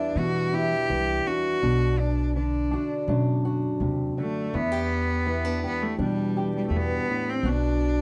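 A bright, biting cello sings the melody up front with light vibrato, while a fingerpicked archtop guitar, its finger squeaks audible, accompanies it in this melancholic, reflective acoustic folk-pop ballad in E minor at a slow 82 BPM, moving between Em7 and Bm. An upright bass enters at 0.2 seconds with woody, growly pizzicato, and a mellow, ringing concert harp adds arpeggios in the background from 2.7 to 5.5 seconds. The production is dark with light reverb, and this passage is cut from a longer piece.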